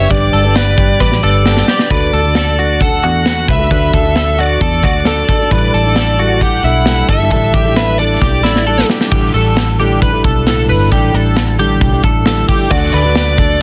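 Jangly indie pop at 133 BPM in D major, bright and nostalgic, in a short excerpt cut from a longer piece, where a distorted, bluesy lead guitar carries the melody up front before dropping out at 8.9 seconds and returning at 12.7. Beneath it, a fingerpicked steel-string acoustic guitar supplies warm accompaniment, a clean twelve-string electric adds twangy, chorus-coloured arpeggios, and a dark, foam-muted vintage bass holds a round low end. A modern studio kit with a punchy kick and medium-tuned snare drives the groove with fills on the way into new sections, all sitting in light small-room reverb under a dense, heavily limited master.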